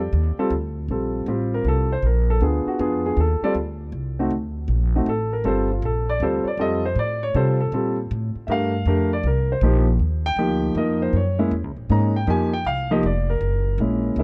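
The sound is dry and close, set in a small room ambience in the manner of a 1970s studio, with both instruments placed up front. This sophisticated, playful jazz passage, cut from a longer piece, swings in 3/4 at 158 BPM in Bb major before moving to Eb major at 10.0 seconds. A concert grand piano carries the melody between F3 and Bb5, its tone natural with a deep bass, and it takes a solo from 0.9 seconds through to the end at 14.2 seconds. Beneath it an acoustic upright bass, plucked pizzicato on steel strings, sounds woody and warm across its range from F1 to C3. The harmony travels through rich chords such as Gm7, Bbmaj9 and Ebmaj7, reaching Gb9 and Gb7 late in the passage.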